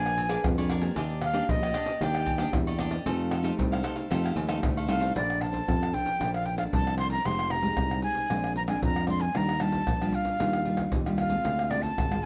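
Samba and choro meet in this festive, sunny fragment cut from a longer piece, moving in a straight four-beat feel. A breathy concert flute carries the melody up front with a close, straight-toned sound and soft attack, taking a solo over the opening 5.2 seconds as the harmony moves from Bb7b9 through Ebmaj7 to F9. Beneath it, a crisp picked cavaquinho adds warm accompaniment until it drops out at 5.1 seconds, while a fingerpicked classical nylon-string guitar sits warmly in the background throughout. A growly, punchy overdriven electric bass gives the low end an amped edge, and a small-room percussion section of egg shaker, pandeiro, tamborim, agogo bells and a deep surdo plays up front with hard hands. In the second section the chords shift to richer colours such as Bbmaj9, Fm9 and Ebmaj9 before settling on Dm7b5, all within a moderate studio reverb.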